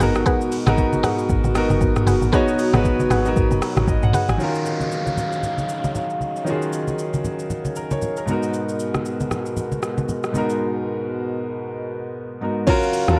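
Worn, warbling cassette tape with light reverb and a warbly pitch drift wraps this late-night, deep amapiano excerpt in Eb minor, which moves at 116 BPM with a 16th-note swing over Abm7 and Ebm9 chords. A clear, intimate concert grand piano with audible action noise sits up front beside a soft-attack French horn section holding sustained chords with light vibrato, while an electronic R&B kit, recorded in a large room with a soft kick and metallic hats, rides with bright, damped congas. A woody, punchy log drum bass and a round, bright synth pluck with chorus and delay drive the opening drop until about 4.4 seconds, when an electronic downlifter enters; the congas drop out at 10.5 seconds, leading into a short break.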